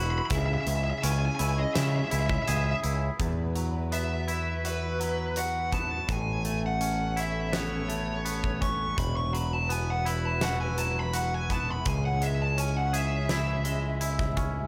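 This post-rock excerpt moves at 83 BPM in a straight 4/4 in E major, with a soaring, cinematic mood. An up-front lead guitar, dark and overdriven, carries the picked melody through analog delay. Beneath it, a twangy, clean electric guitar plays fingered arpeggios, also through analog delay. A growling, bright electric bass sits forward with overdrive, and a huge acoustic drum kit with a punchy kick and fat snare sounds like a big room. A lush, bowed string section holds sustained chords in the background, played sul tasto with vibrato and a soft attack. The harmony opens on C#m, shifts at 3.2 s into a cycle of Esus2 and Aadd9, and returns to C#m at 11.9 s, all within a light, small-room reverb.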